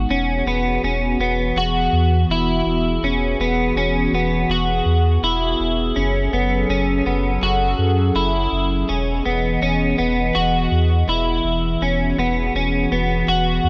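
A hollow, flute-like pad with chorus holds slow-blooming chords as a bright, slightly broken-up electric guitar picks twangy arpeggios through analog chorus and tape echo over a thick, saturated sub bass, all from the first moment of this ethereal, floating dream pop piece at 82 BPM in E major, drifting from Eadd9 through F#madd9 and Emaj7 before returning to Eadd9 at 11.8 seconds within a light digital ambience.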